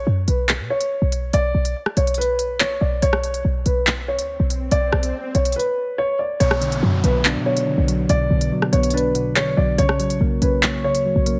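A punchy, tight 808-style bass drives this tense, ominous drill piece from the first moment, its sine tone carrying a noise layer with a fast attack and decaying notes, set up front. It runs at 142 BPM in 4/4 with a half-time feel, in B harmonic minor, and the harmony moves from an unharmonised opening through Bsus2 to Bm and F#/B. A dark concert grand piano carries the melody, deep-bodied and low-pass filtered, while the electronic drill kit enters at 0.3 s with crisp hats, handclaps and rim clicks, tape-warm and produced. Electronic swell and downlifter effects arrive in the middle of the cut, and at 6.4 s soft electric-piano-like synth keys join as accompaniment, round and gentle with a triangle-and-sine blend, mellow chorus, low-pass filtering and a filter sweep. Light reverb and a digital ambience frame the sound of this excerpt.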